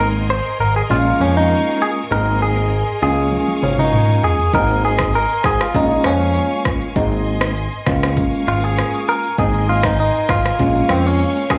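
Light reverb and a digital ambience give this short afrobeats cut, taken from a longer piece, an airy studio polish. At 99 BPM in a straight 4/4 and Ab major, the mood is romantic and breezy, cycling through Abadd9, Bbm7 and Db6. Up front, a bright, twangy clean electric guitar, recorded direct and compressed, carries the picked melody through a digital delay, while a worn, slightly out-of-tune tine electric piano adds lightly overdriven accompaniment that sounds as if heard through its built-in speakers. Beneath them, a fat analog bass mixes sawtooth and square-wave tones with a filter sweep and moving notch, mellow yet present, and a lush, bowed string section holds smooth, vibrato-rich chords high above. The electronic, tape-warm afro-pop drum kit, with its deep kick, rim click, shaker and toms, enters at 3.3 seconds with a fill that runs to 4.5 seconds before settling into the groove.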